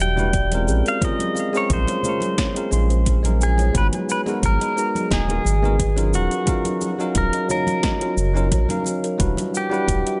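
Lightly swung sixteenths in 4/4 drive this wistful sunset chillout excerpt, built on an overdriven electronic kick and a deep house kit of punchy snare, metallic hi-hat and cabasa, which sound re-recorded in a large room, while bright congas sit distant in the background. Up front, a round, nasal analog bass with tube saturation, a filter pluck and a fast attack anchors a drift of minor ninth chords, and a bell-like tine electric piano and a woody, ringing kalimba enter at 0.2 seconds, both carrying analog delay. The pedal steel guitar carries the melody with fingerpicks, slide and volume swells, its clean tone roughened by vintage 12-bit sampler grit, all inside an echo-heavy mix with light reverb and digital ambience.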